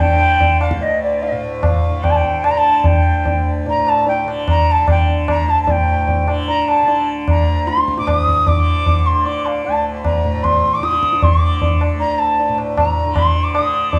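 Hindustani classical music in a solemn, meditative mood and a seven-beat cycle, where an airy, reedy bamboo bansuri carries the tongued melody up front, a softly plucked tanpura sustains a buzzing, shimmering low drone, and a high-tuned, ringing tabla sits close, all in a light small-room reverb as the tempo gradually quickens and a new section begins at 5.7 seconds in this fragment cut from a longer piece.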